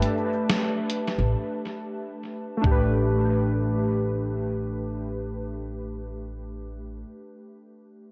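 Melancholic and hazy, this lo-fi hip hop fragment, cut from a longer piece, drifts in free time as warbling, detuned synth keys move from Gadd9 to A9sus4 through chorus, cassette-tape grit, a low-pass filter and tape echo. A muffled, pitched-down sampler drum kit with a thumpy kick and medium-tuned snare plays only until 2.9 seconds. A woody, growly pizzicato upright bass enters at 1.2 seconds on a low A, a brief silent gap interrupts the flow, and spring reverb with heavy echo wraps the mix in a nostalgic blur.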